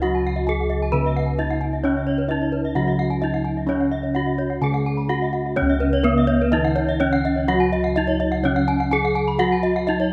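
A dark, smooth bronze metallophone carries the melody up front, struck with a horn mallet, its paired tuning giving off shimmering beats in this ceremonial gamelan passage in Db slendro at 128 BPM with uneven beats, cut from a longer piece. Beneath it, a lower metallophone plays a softer, dark and smooth accompaniment while round, bright bossed gongs sound the bass up front. Two high metallophones spin arpeggios throughout: one close and dry with a full wooden-mallet attack, the other airy and bright under a horn mallet. The ensemble rings in a moderate recital hall, and the music shifts into a new section at 5.6 seconds.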